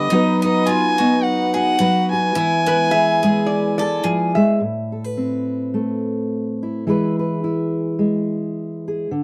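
A dry, close, 1970s-style studio sound with light reverb frames this wistful, melancholic acoustic folk fragment, cut from a longer piece and moving at 107 BPM in 4/4 with a gentle swing. A dark, reedy fiddle with a nasal edge carries the melody up front over a fingerpicked steel-string acoustic guitar, while a very quiet chamber string section holds sustained chords with light vibrato and gut-string tone, a bright bowl-back mandolin picks double-string arpeggios, and a metallic resonator slide guitar adds a second line from 2.7 s. From 4.6 s the guitar plays alone, settling into A harmonic minor over chords moving between Amadd9 and E.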